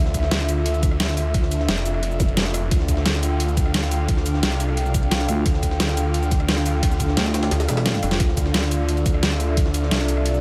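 Dark technical drum and bass at 175 BPM in D minor, futuristic and aggressive, cut from a longer piece and built on a Dmadd9 chord. A snarling, distorted sawtooth bass sits up front with a knocking, overdriven electronic kick and a layered dubstep kit of deep snare, bright hats, rim clicks, shaker and toms, while a very quiet, gritty jungle sampler-style kit adds a high-tuned snare and ride, and a faint zap flickers at 2.2 seconds. Beneath them, a moody analog pad with ring modulation and a soft, breathy pad with chorus and phaser pump with the sidechain, a thick FM bass growls in from 5.3 seconds, and the kick drops out at 7.5 seconds ahead of a drum fill at 7.9 seconds, framed by a light digital ambience.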